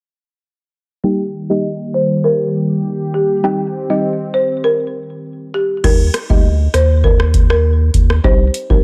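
A woody, rustic marimba melody opens this bouncy, tough dancehall cut alongside a soft, round pluck with chorus and a smooth, detuned analog pad that pumps under a filter sweep, the harmony moving between Eb and Cm. At 5.8 seconds the pad drops out as a thick, saturated sub bass and a booming analog drum machine with a deep kick, metallic hats, rim clicks and a crash cymbal arrive up front. Light reverb and digital ambience surround the parts, and the marimba carries a touch of delay.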